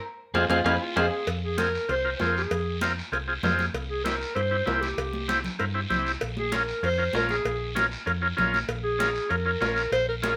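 A straight 4/4 cumbia groove at 194 BPM in F harmonic minor drives this passionate, danceable Latin excerpt, which opens with a drum fill and band accent as a clean, picked electric guitar with spring reverb carries the melody until 1.1 s; then from 1.3 s a breathy, jazz-style clarinet with light vibrato takes a solo over a buzzy vintage combo organ, a round, dark hollow-body short-scale fingered bass, bright, hard-hand congas, a raspy, distant guiro and ringing, close timbales and cowbell, as the harmony moves from Fm through C to Bbm.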